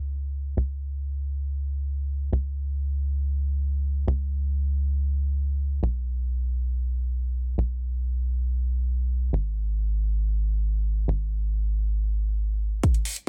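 A tight, nasal sequencer bass drives this uplifting trance excerpt. Its sawtooth and square-wave filter pluck has a fast attack and a decaying tail, sitting up front and pumping against a sidechain while it moves between G#1 and C#2 from the start until 12.8 seconds. The mood is bittersweet and soaring, the time is free, and the tuning sits at A4 = 441 Hz. At 12.8 seconds a layered, up-front electronic kick lands with a punchy thump. A metallic, high-pass-filtered electronic hi-hat enters at the same moment and runs only until 13.2 seconds. The sound is dry and dense, with a heavily limited modern master.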